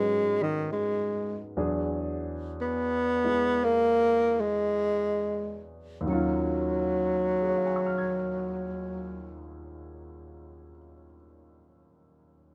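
Jazz ballad in Eb minor at a slow 44-70 BPM with a gentle swing, smoky and wistful, where a mellow, breathy tenor saxophone sits up front carrying the melody with subtone, light vibrato and scooped notes until 9.4 seconds over a warm, natural grand piano accompaniment that carries on alone to 12.5 seconds, the tempo slowing through the first 6.0 seconds in a light reverb as the harmony moves from Abm9 and E7 to Ebm7.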